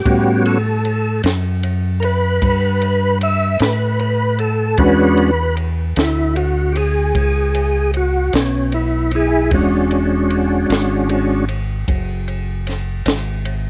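A small room frames this short cut from a longer slow blues in E mixolydian, moving at 51 BPM in a straight 12/8 with a laid-back, gritty mood. Up front, a tonewheel organ holds sustained chords from G3 to E5, its smooth, clean tone colored by a slow rotary speaker and chorus vibrato, and it carries the solo role until its sound stops at 11.5 seconds. Beneath it, a fingered electric bass sits forward with a round, punchy, dark voice, ranging from E1 to A2 and running to the close at 13.7 seconds. A compact cocktail drum kit plays kick, ride and snare, sounding dry and acoustic, with dusky cymbals, a high-tuned snare and a thumping kick. The harmony rests on A7sus2 before shifting to E13 at 4.8 seconds.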